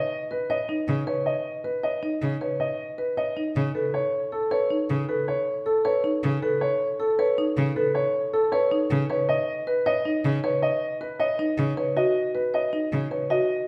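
Heard in a wet recital hall with a 1.6-second reverb, this short cut from a longer classical piece places its three instruments up front. It is hypnotic, bright minimalist pattern music in 7/8, counted at 314 eighth-note beats per minute with a straight feel. A warm concert grand piano carries the melody from the start, its tone boxy with deep bass and long sustain. A marimba played with medium mallets enters at 0.3 seconds with woody, airy arpeggios on rosewood bars, and a single bowed cello joins at 0.9 seconds, holding a low C#3 accompaniment with rich, intense vibrato and a smooth top until 13.1 seconds. The harmony moves from B to Aadd9 and back to B.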